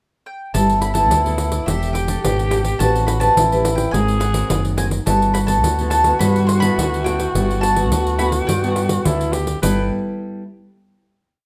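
A mandolin's woody, double-string picked melody opens this sunny, joyful samba and choro piece in G major at 106 BPM. It is joined at 0.5 seconds by a raspy, breathy tenor saxophone counter-melody, a punchy, up-front fingered electric bass playing a samba bass figure and a jingly, close and dry pandeiro, with a fingerpicked nylon-string guitar adding thumb bass and syncopated plucked chords from 0.6 seconds. All of them move through G6/9, Em7, Am9 and Ab9 in a moderate large studio reverb before settling on a final chord that rings to 11.5 seconds.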